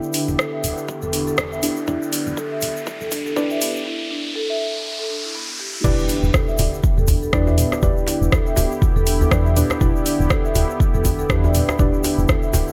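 Afro house at 121 BPM in 4/4 with a swung sixteenth feel, this driving, spiritual excerpt sits in E minor pentatonic on an Em7 chord and is cut from a longer piece. An up-front, overdriven electronic kick and a woody, round FM bass with a fast, decaying attack anchor the groove, the bass pumping against the kick. An overdriven afro-pop drum kit with metallic hats, rim clicks, toms and crash plays a fill over the first 3.9 seconds, while a grainy egg shaker ticks in the background. A mellow marimba with soft mallets arpeggiates on rosewood bars, and a deep, wave-folded chord stab with chorus and tape echo punctuates the harmony, both shaped by filter sweeps during the build-up as a smooth, detuned analog pad holds sustained chords under chorus and tremolo. An electronic riser climbs toward the drop at 5.8 seconds, where an impact lands and a tight, cracking djembe with metal rattles joins from 6.3 seconds. 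A light reverb gives the mix a sense of space.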